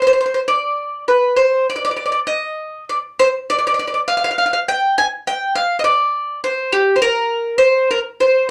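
Romantic and wistful, this short Italian folk fragment in C minor moves at 68 BPM in a straight 6/8, with a bright, picked bowl-back mandolin playing alone up front on its double strings between G4 and Ab5 for the full 8.5 seconds, set in a moderate studio ambience with a dark production.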